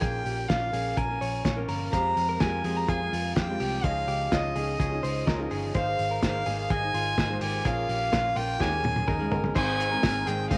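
Vinyl crackle and a light small-room reverb frame this youthful, nostalgic slice of jangly indie pop in Ab major, moving at 126 BPM in a straight 4/4 through a chord cycle from Bbm to a resolving Ab. Up front, a floating, pure violin carries the melody over fingerpicked steel-string acoustic guitar, bright direct-recorded clean electric guitar arpeggios, a round, foam-muted vintage bass, and a cloth-damped, thuddy drum kit with a fat snare and dark cymbals. Warbly lo-fi synth keys with chorus enter in the background at 1.9 seconds, and a drum fill at 8.6 seconds leads into a new section at 9.6 seconds.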